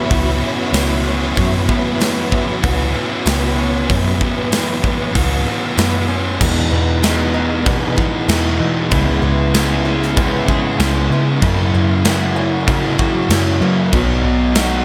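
Wistful and dreamy, this shoegaze and dream-pop rock piece moves at 96 BPM in a straight 4/4, with a vintage sawtooth string machine voicing violas in soft-attack sustained chords under ensemble chorus until 6.4 s, a bright, boxy, octave-doubled twelve-string acoustic guitar shimmering with picked arpeggios through lush chorus and digital delay in the background, a slightly broken-up, lo-fi electric guitar riff from a small old amp bathed in reverse reverb, an up-front, warm fuzz guitar riff carrying distortion and subtle chorus, a dark, round, foam-muted picked bass, a big rock drum kit with a punchy kick and bright cymbals, and a faint, jingly, distant tambourine, as the chords travel from F#7sus4 through Emaj7, C#m7 and F#7 to B inside light small-room ambience.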